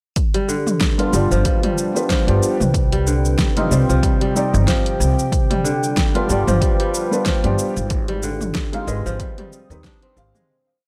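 An overdriven, punchy electronic kick and a layered deep house kit of shaker, closed hat, low tom and fat snare open this hypnotic, meditative organic downtempo piece at 0.2 seconds, joined at once by a crisp, ringing fingerpicked kora repeating a sixteen-step pattern through analog delay over a swung groove. From about 1 second a felt-muted upright piano adds soft, intimate syncopated quartal chord stabs with audible action noise and analog delay, a woody pizzicato upright bass plays an up-front syncopated riff, and a warbling, detuned tape-like pad holds slow-attack chords with chorus, the piano, bass and pad each pumping to the sidechain. The dry, gritty recording sits in a studio reverb as the harmony moves through G7, Cm and Abmaj7, fading out from 7.0 seconds.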